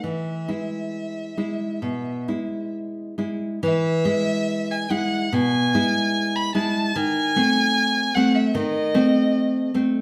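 Warm and serene, this romantic duo in E major drifts at a rubato 66-76 BPM, with a rich, smooth, even violin singing the bowed melody up front with vibrato, over the full-bodied fingerpicked accompaniment of a classical nylon-string guitar, both played live in one room and bathed in a large studio reverb, before the passage moves into a new section at 3.6 s and a diminished chord arrives at 6.9 s in this fragment cut from a longer piece.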